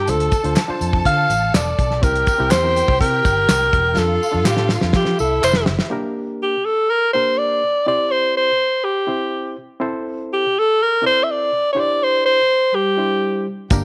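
A breathy alto saxophone opens this urgent, driving slice of 1960s-style soul, carrying the melody up front with pop-style vibrato over lush bowed symphonic strings and a dark, foam-muted fingered electric bass. Almost at once a barky, reedy electric piano joins with light overdrive, alongside a cloth-damped acoustic drum kit with a fat snare, tight kick and rolled-off top, plus tambourine and handclaps in a live-room setting. The drums close the opening stretch with a fill from 4.0 to 5.9 seconds, after which the drums, bass, strings and percussion drop away, leaving the saxophone and the bright electric piano, heard through its built-in speakers, to carry the second passage over a minor-to-major chord movement. Near the end, a mellow, ringing vibraphone played with soft mallets adds a brief second line with slapback echo, and the drums, bass, strings and percussion touch back in at 13.7 seconds as this short cut from a longer piece closes. 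The whole sits in a small room with light reverb.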